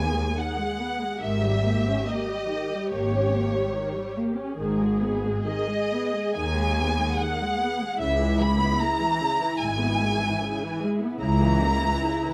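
Moving in a pliant rubato 4/4, this slow romantic movement for string orchestra carries a yearning, solemn mood. A focused violin section sings the melody up front with vibrato, a second violin line sits in the background, and an expressive, lush viola section accompanies with portamento. Beneath them, smooth, even cellos and double basses share the bass, all captured by close, detailed microphones in light reverb.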